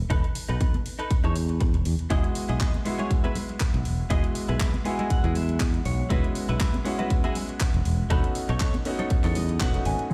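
A bright, punchy fingered electric bass sits up front in this sunny, groovy nu-disco excerpt, pumping against a punchy, layered electronic kick with a lightly swung sixteenth-note feel. Handclaps and hi-hat from a house kit, re-recorded in a small room, ride under the beat, while congas and maracas played with hard hands add close, dry, acoustic color in the background. A clean, compressed electric guitar picks a riff through lush chorus, a low-pass filter and delay, adding fills at 4.6 and 9.1 seconds. From 2.1 seconds a clear, smooth concert grand with a vintage character, deep bass and short sustain joins as accompaniment, also pumping under sidechain and treated with filtering and delay. The chords move from B7/E to Emaj7, F#7sus4/E and back to B7/E, and at the final moment a thick, detuned unison pad is barely audible. The mix carries little reverb on the parts themselves but has the sound of a big system playing in a bare room.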